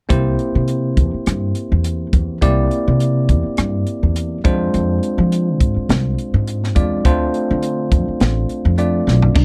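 A funky 104 BPM groove in 4/4 with a light sixteenth-note swing drives this bright electric jazz fusion excerpt in C mixolydian, where a crisp, polished drum kit with a tight kick and rim clicks sits up front beside a woody pizzicato upright bass. A bell-like tine electric piano comps through chords moving from C7 to Fm6 and then Dm7, all in a dry, close 1970s-style studio sound. A drum fill at 9.1 s leads to a single twangy, lightly chorused clean electric guitar stab at 9.4 s.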